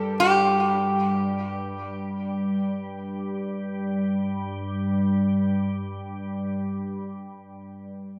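A wet, church-like reverb with a long 3.2-second decay surrounds this short fragment of spacious, meditative world music cut from a longer piece. A calm, organ-like drone sits up front from the start to 7.0 s, its sine-pure unison tone swelling in slowly and sustaining with a long release, thickened by ensemble chorus, its own built-in reverb and a phaser. Over it, a metal-body resonator slide guitar carries the melody, bright and nasal with a metallic edge, played with fingerpicks and a slide, and touched with delay. The guitar is heard only until 2.9 s, staying in a narrow upper range. After 3.2 s the piece moves into a new section where the drone continues alone, leaving a still, open atmosphere.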